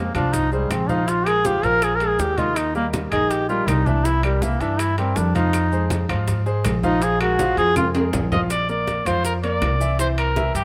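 Joyful and danceable, this salsa excerpt opens with a clear duduk carrying the melody up front as a folk-style solo, its scooped notes gliding over the groove. Beneath it, a bright, polished upright piano supplies the accompaniment, while a dark, thumpy upright bass played pizzicato on gut strings sits prominently in the mix. The percussion stays mostly in the background: low-tuned, thick-skinned congas, ringing metal-shell timbales and woody claves, along with grainy maracas, and tight, high-tuned bongos played very quietly. A drum fill at 7.8 seconds and the entry of a punchy, vintage-toned trumpet at 8.3 seconds lead into a new section at 8.5 seconds, with the trumpet taking over the melody as a pop-style solo with light vibrato. A moderate plate reverb gives the recording a sense of space.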